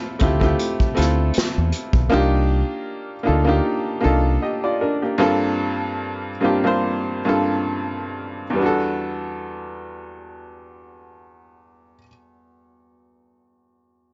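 A woody, boxy upright piano carries this late-night, sultry neo-soul and R&B fragment, its short-sustained chords moving through Dm11, Cm11, Gm11 and Em11 in 4/4 at around 67-79 BPM with a light 16th-note swing of 55%, tuned to A4 = 436 Hz. A dark, round fingered electric bass joins almost at once, punchy and up front with a direct, amped tone. A distant, roomy acoustic kit played with bundle sticks brings a punchy kick, a medium-tuned snare and hi-hat, but it drops out at 2.1 s, where the tempo begins slowing until 8.6 s. The bass stops at 4.4 s, leaving the piano to carry on by itself. Moderate studio reverb and a soft, rolled-off top end give the passage an intimate, hazy glow, and it is cut from a longer piece.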